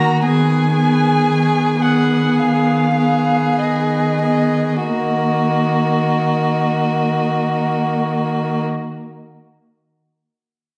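A string quartet opens together in a slow, elegiac romantic movement cut from a longer piece, the distant first violin singing a melancholic melody with vibrato and portamento over a close, even second violin, a smooth, far-off viola and an intense cello bass up front, the rubato easing as it slows until the harmony settles at 4.9 seconds in a reverberant recital hall heard from further back.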